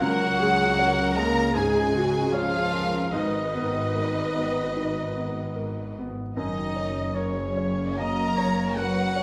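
A cinematic, emotional film score for orchestra, this short passage cut from a longer piece feels uplifting and moving, drifting in a rubato 4/4 at around 71-78 BPM in F# major. A distant, lush violin section carries the melody with expressive vibrato, while a hollow, pure silver flute, a solo oboe with light vibrato, and a second, smoother violin section in the background trace companion lines alongside it. A felt-muted upright piano adds soft, intimate accompaniment with short sustain, joined by a rich viola section and a tight, mellow French horn section holding sustained chords. Cellos sit close and even in the background, and a focused, clear double bass section anchors the low end. The harmony moves from C#sus4 to G#madd9 at 3.1 seconds and settles on F# at 6.4 seconds, with the whole ensemble sounding from start to finish and bathed in the wet reverb of a recital hall.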